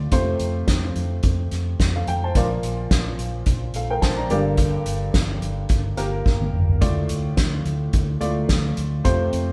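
Piano-driven pop at 108 BPM with a light sixteenth-note swing, this hopeful, anthemic clip sets a woody, up-front upright piano over a dark, round, foam-muted electric bass, moving through F, Bb, G minor and D minor. A soft-mallet drum kit with a fat snare and boomy kick sits close in the mix, marking the turn to the final chord with a fill at 6.3 seconds. The band plays together in one room, and a moderate stone-room reverb lends the whole take a live, spacious feel.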